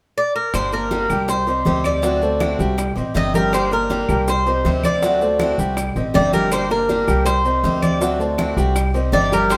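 A straight four-beat son groove drives this nostalgic, danceable guajira fragment: close, dry congas ring under hard hands, round bongos sit very quietly, distant claves sound woody, grainy maracas stay in the background, and a thumpy, dark pizzicato upright bass anchors the low end. Up front, a metallic, double-strung Cuban tres picks the melody from 0.2 seconds, joined by a boxy, bright picked swing-style acoustic guitar and, from 0.7 seconds, a smooth vintage grand piano playing arpeggios. The harmony cycles through Gm, Cm and D7 in a light reverb.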